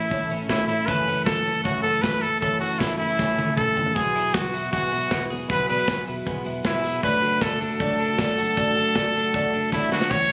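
Captured on a phone in a moderately reverberant club-like room, this compressed excerpt from a longer jangly indie pop piece sounds youthful and nostalgic. A bright, punchy trumpet carries the melody up front, while a very quiet chamber violin section traces a soft-attack second line high above it, played sul tasto with light vibrato. Underneath, a clean, compressed twelve-string electric guitar spins arpeggios, and a dark, woody, boxy twelve-string acoustic guitar adds shimmering octave-doubled picking from the background. A round, foam-muted fingered bass sits low in the mix beside an acoustic drum kit with a punchy kick, medium-tuned snare and bright cymbals, which plays fills at 3.2 and 9.7 seconds. The harmony moves from A through F#m7 and Eadd9 to D/F#, and a jingly tambourine flickers in very quietly at 10.1 seconds.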